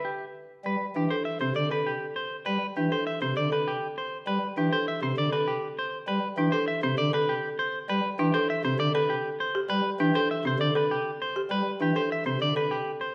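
Minimalist classical pattern music in 6/4, this short passage cut from a longer piece feels both meditative and urgent, resting on a single Am9 harmony from 0.7 seconds onward. A clean electric guitar carries the melody, its bright, picked tone sitting up front with a slight scoop into the notes. Beneath it, a marimba struck with hard mallets plays arpeggios from 1.0 seconds, its hardwood bars sounding woody, rustic and dark yet smooth. A soft pipe organ on flute stops supplies low accompaniment in a baroque voicing, with an audible chiff at the start of each note. The whole ensemble sits in a wet recital hall, giving the patterns a lingering, resonant space until the guitar's final note at 13.1 seconds.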